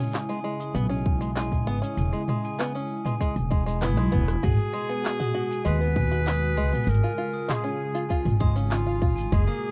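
Delicate and autumnal, this short folktronica excerpt sets fingerpicked, plunky banjo arpeggios with tape echo over a detuned, chorused sawtooth pad and an organic electronic kit of handclaps, rim click, shaker and toms, while dark, bell-like glockenspiel with brass mallets rings above, a growly pizzicato upright bass sits up front beside a tight electronic kick, and as a drum fill begins at 3.8 seconds a breathy, jazz-style clarinet with light vibrato takes the melody in a dry, close 1970s-style studio sound.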